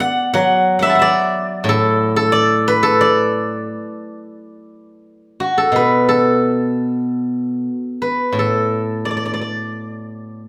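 This Chinese traditional recording of solo plucked strings has an elegant, pastoral mood and is cut from a longer piece. A steel-string zither, played with fingerpicks, carries everything alone from 0.0 to 10.5 seconds, ranging from A2 to D6 in a D gong mode. The pulse sits around 84-95 BPM in 2/4, but the rubato feel lets the phrasing breathe freely. The acoustic zither sounds silvery and ringing, placed up front in the mix. A wet, large studio reverb with a 1.3-second decay surrounds the live performance, and a new section begins at 4.4 seconds.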